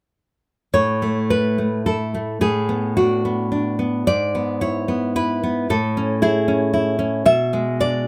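A fingerpicked nylon-string guitar enters at 0.7 seconds and plays alone through to 8.1 seconds in this short romantic piece for solo classical guitar. The mood is sunny and nostalgic, moving in 3/4 at roughly 102-117 BPM with a free, rubato feel in A major. The harmony passes from A through Bm7/A and E/G# back to A before settling on E7/B, so the passage feels like an open thread cut from a longer piece. The guitar's tone is full-bodied and deep, spanning G#2 to E5, and the close, detailed microphones catch the finger squeak as hands shift along the strings. With little reverb, the instrument sits up front and intimate.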